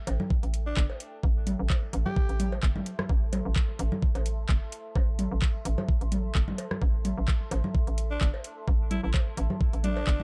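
A swung 4/4 groove at 129 BPM drives this hypnotic, quirky minimal techno excerpt in A minor, anchored by an overdriven, knocking electronic kick that sits up front from 0.3 seconds. Around it, a garage kit adds handclaps and metallic, overdriven hi-hats, while a tape-warm organic electronic kit scatters congas, cowbell, rim clicks and toms with a small-room character. A hollow, bouncy FM bass with a punchy, fast attack and decaying notes pumps against the kick in a low G1 to A1 range over a single Am7 chord. Above, a deep, moody sawtooth pad with a sine sub octave, detuned unison voices, chorus and reverb breathes with sidechain pumping at a low level. A raspy, gritty alto saxophone cuts through with scooped notes and vibrato, soloing between 0.7 and 2.5 seconds and returning at 8.1 seconds, its phrases trailed by dub echo inside a dark, intimate room sound.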